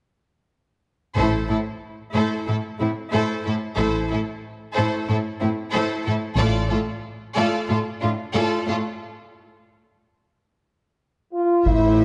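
An up-front cello section holds a rich, bowed A2 bass beneath lush violas and clear violins in this dark, heroic epic orchestral film-score excerpt at 92 BPM in A minor, moving from Am to a rootless Dm over A, with the double bass section dropping out at 6.7 s before a distant French horn section and close, dry taiko drums struck with heavy sticks arrive at 11.3 s and 11.7 s, all set in a moderate scoring-stage reverb.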